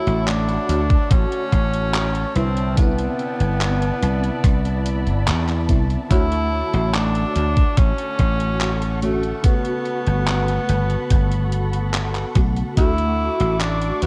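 A clear tenor saxophone melody with 12-bit sampler grit and tape echo opens this nostalgic, dreamy vaporwave fragment at 72 BPM in D major, over a lush FM electric piano with a soft pad layer, phaser and ensemble chorus, and distant, veiled con sordino strings holding sustained chords, while a punchy, up-front thumbed slap bass, a detuned 8-bit drum machine's handclaps and hi-hat in gated reverb, and a thumpy electronic kick arriving at 0.9 s carry the Dmaj7, Cmaj9 and Gmaj9#11 changes through a dry, cassette-toned sound.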